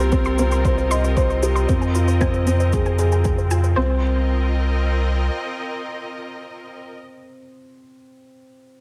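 A felt-muted upright piano with audible action noise plays a mellow, dark riff through tape echo over sustained chords from a clear, bowed string section, a round sine sub bass and a detuned sawtooth pluck arpeggio carrying a filter sweep, with sidechain pumping on the strings, bass and pluck, as an overdriven, layered electronic kick drum and shaker enter at 0.1 seconds in this moving, melancholic piano and strings electronica fragment in C minor at 115 BPM that shifts from Cm to Fm7 and back to Cm, the pluck stopping at 4.0 seconds and the piano sounding on until 8.8 seconds.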